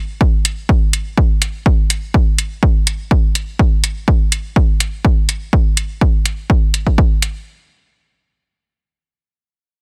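Quirky and clinical, this short cut from a longer minimal techno piece runs at 124 BPM in a straight 4/4, with a punchy, dry analog electronic kick drum arriving at 0.2 s and layered, warm electronic hi-hats, re-recorded in a small room, joining at 0.5 s, both sitting up front in a close mix with little reverb.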